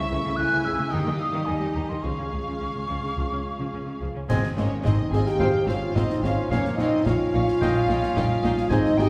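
A symphonic orchestra opens at once in a heroic, adventurous film-score mood, with a vibrato-laden violin section carrying the melody while a second, intense violin line and a hollow, close-miked flute trace counter-lines. Beneath them, a lush viola section fills in the accompaniment, a mellow French horn section holds sustained chords, a very quiet fingerpicked harp rings out arpeggios, and cellos and double basses, the latter entering at 0.1 seconds, anchor the bass. At 4.3 seconds the music moves into a new section as a bright oboe and a present clarinet add further lines in the background, a smooth-topped trumpet punches in with stabs, and snare drum, clash cymbals with dark cymbal tone, and concert bass drum join from a close, dry position behind the ensemble. The orchestra sits further back in a wet scoring-stage reverb, giving the piece a grand, spacious sweep as it unfolds like a fragment lifted from a longer cue.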